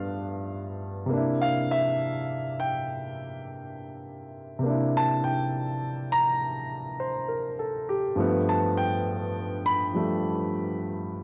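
A warm grand piano plays alone from the start in this short solo jazz piece cut from a longer work, moving through G9 and C9 harmonies before returning to G9 near 8.2 seconds. The mood is swinging and playful, with a swung eighth-note feel in four. The piano sits up front with a natural, tape-tinged tone from a home cassette recording, set in a lush hall reverb.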